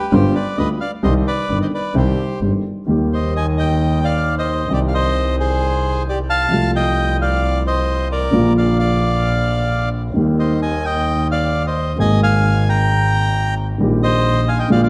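A reedy, close-miked bandoneon opens this passionate, tense rubato tango fragment with a dry, up-front melody touched by slapback echo, joined at 0.1 seconds by a concert grand piano's deep-bass accompaniment and a single bowed double bass, biting and earthy with light vibrato, set in a large studio reverb within a dark, warm production marked by lossy compression artefacts.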